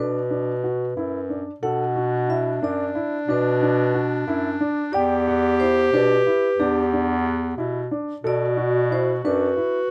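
Restless and urgent, this short excerpt of contemporary chamber music moves in an uneven 5/8 at 181 BPM counted in eighths, with a straight feel and a B phrygian colour, tuned to A4 = 442 Hz. A ringing vibraphone, struck with medium mallets and played with the motor off, carries the melody, while a mellow baby grand piano plays arpeggios alongside it. A vintage-toned bass clarinet anchors the low end in a classical style, sitting up front. At 1.6 seconds a dark clarinet joins with a second line, also classical in manner and placed forward. The harmony moves from Bm to Em7 and then to Bm7, and the dry, close sound carries little reverb before the piece is cut off at 9.9 seconds.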